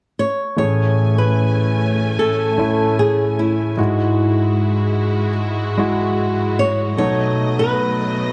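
A fingerpicked flamenco guitar carries the melody up front, its fresh strings and acoustic tone touched by a slapback echo as it enters at 0.2 seconds. This short, tender pop passage, taken from a longer piece, moves at a straight 75 BPM in 4/4 in A major and carries an emotional mood. At 0.6 seconds a concert grand piano joins in accompaniment, polished and present with deep bass, long sustain and audible action noise. A bowed studio string section enters at the same moment with smooth, even sustained chords, a rich ensemble sound with light vibrato and a smooth top. The harmony moves from Amaj7 to Eadd9/G# at 3.8 seconds and on to B7. The production is dark and warm, held in a light studio reverb.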